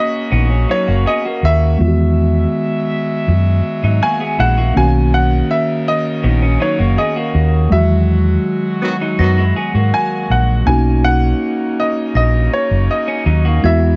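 A round, punchy hollow-body bass sits up front in this romantic slice of lush 1970s-style soul in B major at 81 BPM, beneath an intimate baby grand melody with audible action noise, mellow tine electric piano, a twangy, slightly broken-up guitar riff with subtle chorus, nasal stopped French horns holding chords in the distance, a brief jazz-style horn stab at 8.8 seconds during a band accent, and a bell-like glockenspiel ringing softly in the background for a moment at the very start and again from 9.2 seconds, all in a light small-room reverb over Bmaj9 and Emaj9 chords.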